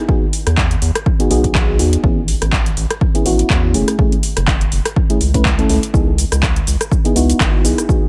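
A mellow FM electric piano opens this moody, hypnotic deep house excerpt, playing soft, full-bodied stabs with chorus, digital delay and sidechain pumping over a chord cycle of Emaj9, Amaj9, F#m7 and C#m7 in C# minor. An overdriven electronic kick joins at 0.1 seconds, punchy and layered, setting a 123 BPM pulse in 4/4 with a 56% swing on the sixteenths. The rest of the kit follows at 0.3 seconds, with cabasa, handclaps, metallic hi-hats and rim clicks, also overdriven and sitting lower in the mix. A round, deep analog bass enters at 0.5 seconds, its evolving square and sine tones wave-folded and dark, thickened by tube saturation and sidechain pumping. The whole fragment sits in a digital ambience and is tuned slightly flat of standard pitch.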